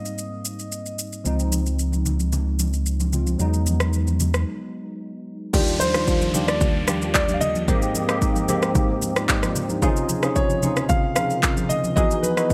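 Amapiano at 112 BPM in Eb major, relaxed and soulful, this cut from a longer piece moves through lush major-ninth chords from Abmaj9 to Dbmaj9 and Emaj9. A bright, clean tine electric piano carries the accompaniment throughout, up front with ensemble chorus and a low-pass filter, while an electronic afro-pop drum kit with a deep, overdriven kick, handclaps, rim click, shaker and crash cymbal sits prominently in the mix. Ringing, medium-tuned congas played with soft hands add an acoustic live-room touch in the background, and a deep, full sub bass with octave, sine and triangle in tone, anchors the opening stretch from 1.3 to 4.4 seconds. A filter sweep runs through the first section before a break at 4.5 seconds, and at 5.5 seconds the concert grand piano returns with a boxy, long-sustaining melody treated with delay and a low-pass filter, joined by a woody, dark marimba playing smooth stabs with delay and an electronic downlifter. 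Light digital reverb gives the whole a bright 1980s-style sheen.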